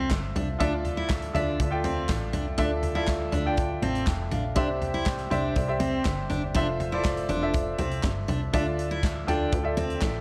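A polished grand piano, a full-bodied picked dreadnought guitar riff and a plucky, punchy analog bass with a fast, decaying filter pluck open this hopeful piano-driven pop excerpt at 121 BPM in a straight 4/4. An airy studio drum kit with a tight kick, medium-tuned snare, hi-hat, toms and handclaps joins at 0.1 seconds, and the piano, sitting up front with long sustain, plays a fill from 3.6 to 4.6 seconds as the harmony moves through Fmaj7, Dmadd9 and Cadd9. The whole recording carries light reverb in a small room and the worn, warbling pitch drift of old cassette tape, giving it a warm haze.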